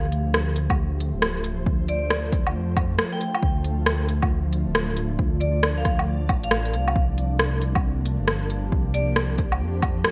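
A ringing, metallic vibraphone enters at 1.9 seconds with a delayed melody over an airy, chorused pad and a deep, rumbling detuned saw bass, both pumping to the sidechain, while overdriven electronic drums of smooth hi-hat, rim click and woodblock with gated reverb are joined by an overdriven kick in this melancholic, rainy 136 BPM future garage cut in D minor, moving from Dm7 to C9sus4 under bright 1980s-style digital production and vinyl crackle.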